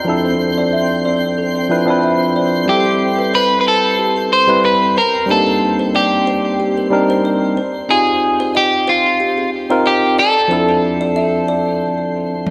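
A bright, twangy, slightly broken-up electric guitar carries the melody with delay from 2.7 s in this relaxed, wistful sunset chillout piece at 92 BPM with a light 16th-note swing, over a clean, up-front tine electric piano and mellow, woody kalimba arpeggios, both low-pass filtered and delayed, while a twinkling, sparkling granular texture hangs quietly behind them through Dm9, Am9, Cm9 and Fm9 chords, until a short break gives way to overdriven electronic toms at 12.5 s, the mix framed by a wet plate reverb and bright 1980s-style digital production.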